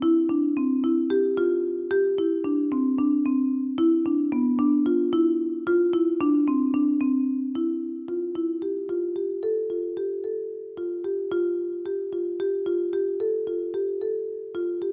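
A solo marimba played with medium mallets carries this hopeful, playful contemporary instrumental cut from a longer piece, its woody, full padauk tone sitting close and up front across a compact range from B3 to A4. The line moves in 7/8 at 223 BPM counted in eighths, with a straight feel in F major, and shifts into a second section at 7.6 seconds. Close, detailed microphones and light reverb keep every stroke clear.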